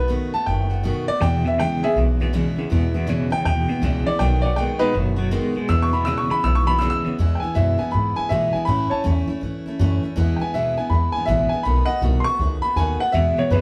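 A clear, woody upright piano leads this rollicking, rowdy rockabilly cut with a swung feel, taking a solo over the first 7.2 seconds. A thumpy, dark upright bass with gut strings sits up front beside it, while a full-bodied steel-string acoustic guitar picks bright accompaniment, and a twangy, compressed electric guitar with tremolo plays a riff from 1.2 seconds before returning briefly near the close. The band sounds like it is playing live together in one large studio room, with a moderate reverb around them.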